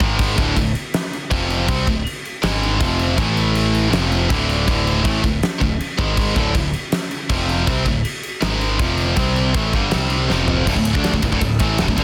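In a straight four-count, the drums hold a heavy half-time feel from the start until a fill at 10.3 seconds tips the piece into a new section at 10.7 seconds, in this short cut from a longer heavy metal track. The mood is dark and relentless, built on a churning cycle of power chords that keeps returning to its home chord. Two distorted, high-gain electric guitars play picked riffs up front, both with a bright, biting edge. Beneath them, a picked electric bass with a growly, direct tone anchors the low end. The acoustic drum kit sits up front too, with a fat snare, a tight kick, crash and ride cymbals, and toms ringing in a stone-walled room. The dry mix is dense and heavily limited in a modern style.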